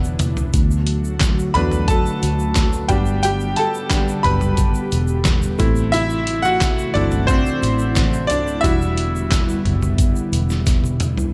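A straight 4/4 groove comes from a gritty, compressed, pitched-down trip hop drum kit with a thumpy kick, a medium-tuned snare, hi-hat, handclaps and toms, sitting up front. It enters with an opening fill at 0.2 s and closes the clip with another fill at 10.7 s. Over it, a bright, woody upright piano plays solo throughout this earnest, driving piano-driven pop passage cut from a longer piece, sounding intimate and present with its action noise audible. A round, foam-muted vintage electric bass with an amped tone holds the low end. An airy, breathy pad sustains detuned, chorused chords with a slow attack and long release, while a grainy egg shaker sits close and dry in the background. The harmony moves from Em7 through D, G and Am back to Em7, framed by light reverb in a dark, warm production.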